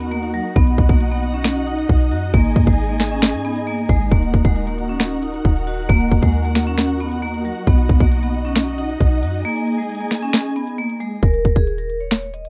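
Up front, a trap drum kit drives this menacing, eerie hip hop excerpt at a half-time feel, with a hard-clipped kick, a sharp snare, crisp hi-hats and finger snaps. A clean 808-style bass runs throughout, deep and boomy with a sine-like tone, fast attack and decaying notes. Over it a bright vibraphone played with medium hard mallets carries the melody, its metallic, ringing tone touched by motor vibrato and a delay. A dark symphonic string section holds lush, bowed sul tasto chords with expressive vibrato and a smooth top, moving through Ebm, B and Ab5 before dropping out at 11.2 seconds, after a break that begins at 9.4 seconds. The rough home demo mix sits in light reverb, and the piece is cut from a longer work.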